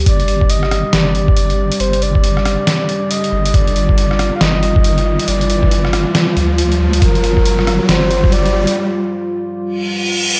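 A swung, half-time groove at 138 BPM in 4/4 anchors this brooding, meditative deep dubstep excerpt in G minor. It is built on a muffled, thumpy, pitched-down electronic kick that sits loudest in the mix, alongside a gritty, tape-coloured trip hop sampler-style kit of hi-hat, rim click and medium-tuned snare placed up front. Beneath it, a deep, mellow wobble bass blends square and sine tones with chorus and saturation, holding sustained low notes between G1 and D2. A dark, nasal analog pad with slow attack and long release holds sustained chords, while a breathy, flute-like synth lead with vibrato, chorus and dub echo carries the melody between Bb4 and F5. Electronic riser and reverse cymbal effects frame the whole passage as a build-up. After the kick drops away, the bass and sampled kit stop at 8.7 s and the lead at 8.8 s, opening a brief break for the pad and effects, with the reverse cymbal arriving at 9.8 s, all under a light reverb.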